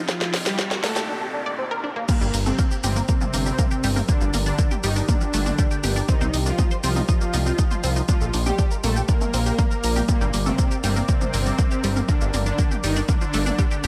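Straight 4/4 drums drive this dark, dramatic melodic techno excerpt: a punchy, overdriven electronic kick sits up front beside a house kit of cracking snare, bright hats, shaker, crash and toms. It opens with a drum fill, a background riser and noise sweep, and a filter sweep on the arpeggio synth, building for 2.1 seconds. At the drop, a fat, detuned analog bass enters up front at 2.2 seconds, pumping under a tight, driving sequenced arpeggio with chorus, phaser and dub echo, a smooth supersaw melody with delay, and a deep, moody, mellow pad of slow-attack chords in the background, all moving from G minor through C minor and B-flat in light digital ambience.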